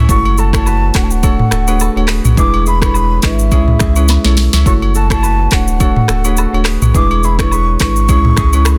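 A lightly swung sixteenth-note afrobeats groove, driven by a produced, up-front drum kit with a deep kick and a sharp, softly clipped snare and punctuated by a drum fill at 4.1 seconds, carries this hypnotic, mellow excerpt. A round sine sub bass anchors the F#m7–Dmaj7–E7–C#m changes, while soft-mallet marimba adds woody, boxy accompaniment and a breathy flute with vibrato sings the melody through tape echo. A crisp, fingerpicked kora rings out a quieter echoed riff, and close, dry agogo bells and woodblock sit in the background.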